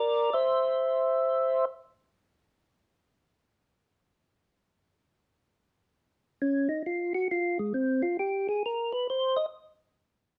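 Bluesy and smoky, this short jazz excerpt swings at 133 BPM in 4/4, carried by a lone percussive tonewheel organ placed up front and turning through a slow rotary speaker. Its round, mellow, clean tone with third harmonic percussion opens on a C9/Bb chord, falls away at 1.7 seconds, then returns at 6.4 seconds for a solo in the second section. A moderate studio reverb and a dark production frame the organ.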